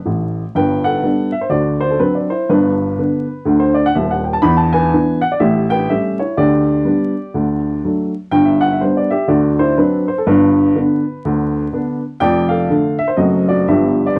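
A short solo upright piano fill opens this exuberant, playful stride jazz excerpt before the swinging groove settles in at 0.5 seconds. The dark, woody upright piano sits up front alone throughout, spanning from deep bass to high upper notes as it moves through lively changes that close on a diminished chord and a dominant seventh. A moderate club reverb surrounds it, while worn, warbling old tape, vinyl crackle and a wavering pitch drift give the whole recording a vintage, cassette-like patina.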